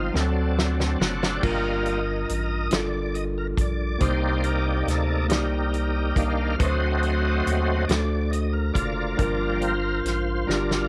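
Solemn and fervent, this slow gospel passage in 6/8, cut from a longer piece, opens with a dark, distant French horn section holding chords in the background alongside a clean tine electric piano, a round analog bass and a natural country drum kit with a fat snare and punchy kick, which enters at 0.2 seconds with a drum fill. At 1.4 seconds the horns stop and the bright tonewheel organ, which has held chords from the start, takes a shouting solo up front, lightly overdriven with key click, chorus vibrato and a slow rotary speaker. The harmony moves from Gm7 through Cm7 and D7 over light reverb before a final drum fill at 10.5 seconds.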